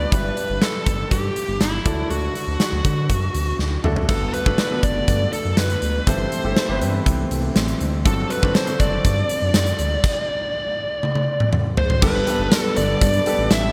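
Bright digital 1980s-style production sits in a lush hall with moderate reverb and studio ambience, giving this short, romantic and nostalgic pop excerpt a glossy, spacious sheen. At 121 BPM in a straight 4/4 in G major, a huge acoustic arena drum kit drives things up front with a punchy kick, medium-tuned snare, bright cymbals, hi-hat, tambourine and toms, plus fills leading into 4.1 seconds and again before 12.0 seconds. A dark, distorted, picked electric lead guitar carries the bluesy melody prominently, bathed in shimmer reverb and delay, while a natural-sounding baby grand piano with short sustain adds accompaniment through its own shimmer reverb. Underneath, a smooth, dark synth bass blends sawtooth and triangle tones with ring modulation and vibrato. A bold, brassy analog pad with a soft attack, detuned chorus and filter sweep joins quietly at 4.1 seconds, and at 12.0 seconds very quiet, round, mellow synth brass stabs arrive as the harmony settles on Gadd9.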